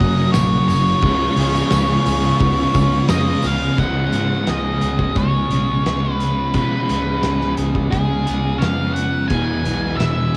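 Shoegaze-leaning dream pop rock at 87 BPM in Db mixolydian, this hazy, dreamy cut from a longer home cassette recording rides a dark octave-fuzz lead guitar melody up front, with tape echo, over a thick fuzz guitar riff, a crunchy overdriven guitar riff in the background coloured by reverse reverb, and twangy, slightly broken-up arpeggios from an electric guitar through a small old amp with analog chorus and tape echo. A round, foam-muted vintage fingered bass and a loose indie kit with a fat snare, punchy kick and rolled-off top anchor the groove, while a silky, warbling string machine and a jingly, distant tambourine colour the opening until about 3.8 seconds. The chords move from Gb to Db7, and near 9.3 seconds the harmony shifts to E, all wrapped in a small, lightly reverberant room.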